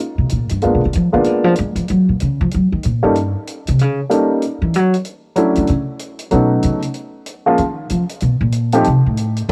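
Swinging in 4/4 at 189 BPM, this sophisticated, warm jazz piano trio excerpt centres on a woody, thumpy pizzicato upright bass solo from 0.2 seconds, up front in a small room with light reverb, while a faint acoustic drum kit with dark cymbals sounds hi-hat and ride from 0.3 seconds and an intimate baby grand piano, its action noise audible, carries the melody from 0.6 seconds over extended jazz harmonies.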